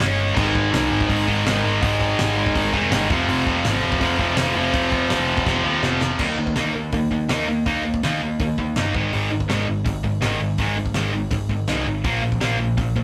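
This raw, angry punk rock excerpt opens with a distorted, double-tracked electric guitar riff driving hard in F minor at 164 BPM in a straight 4/4, joined from the start by a growly overdriven bass and a loose drum kit with a fat snare, punchy kick and dark cymbals. At 0.3 seconds a heavy high-gain guitar piles on a second bright, up-front riff, thickening the opening passage around an F minor chord. A drum fill at 5.5 seconds marks the point where that high-gain guitar drops out at 6.2 seconds and the music shifts into a new section built on Eb5, Ab5 and Bb5 power chords. The first guitar, bass and drums carry on together to the end of the cut. The sound is a rough rehearsal-room recording with tube saturation and a moderate small-room reverb, giving the kit a pumping room presence.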